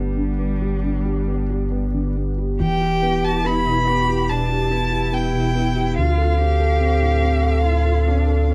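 A dark, lightly reverberant production frames this reflective, fragile neoclassical fragment in a rubato 4/4, where a thick-felted upright piano with audible action noise and a rich, smooth-topped bowed cello sit over a punchy sine sub bass and a swirling, detuned analog pad treated with phaser and chorus in the background, until a clear, distant-toned solo violin takes the melody at 2.6 s as the chords move from G to Em to Dm7.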